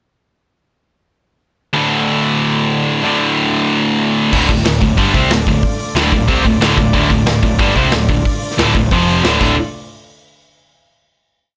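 Two bright, high-gain electric guitars open this short, heavy and epic metal piece at 1.7 seconds with an up-front power-chord riff of ringing chords. At 4.3 seconds the full band crashes in: a punchy acoustic rock kit with bright cymbals drives a big groove, a growly overdriven bass doubles the riff in driving eighth notes, a very quiet double-tracked sludgy guitar thickens it, and a warm chamber string section holds sul tasto chords with light vibrato in the background. A drum fill leads to a final hit at 9.6 seconds, all captured in a dry, blown-out, overdriven recording.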